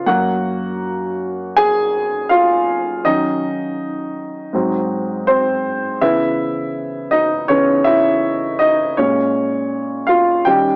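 Lush and warm, this brief soul fragment from a longer piece features a natural, up-front baby grand piano playing solo from 0.0 to 10.8 seconds, ranging from Gb2 to Ab5 with a gentle 16th-note swing through rich chords such as Gbmaj9, Ebm7, Ab7, Dbm9 and Bbm7, set in moderate studio reverb with the small-speaker character of a home cassette recording.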